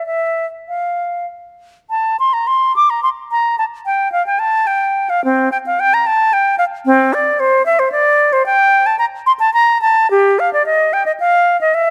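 A solo concert flute, pure and straight-toned with tongued notes, sits up front in this serene, flowing baroque-style fantasia in a rubato triple metre, its brief opening phrase giving way at 1.9 s to a longer passage heard through close, detailed microphones and light reverb until the fragment breaks off at 11.9 s.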